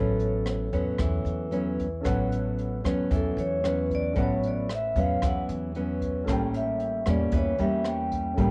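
Sophisticated and romantic, this straight 114 BPM bossa nova in A major, cut from a longer piece, sets a metallic, ringing vibraphone with medium mallets and its motor off, carrying the melody and taking a solo from 2.1 seconds with a cassette-tape tint, over an up-front, full-bodied nylon-string guitar thumb-plucked in classical style on fresh strings, a woody, thumpy upright bass on gut strings, a brushed jazz kit with boomy kick, hi-hat and rim click entering at 0.2 seconds, and a natural baby grand piano joining in the background at 2.0 seconds, all in a light-reverb home cassette recording moving from A69 to A7b9.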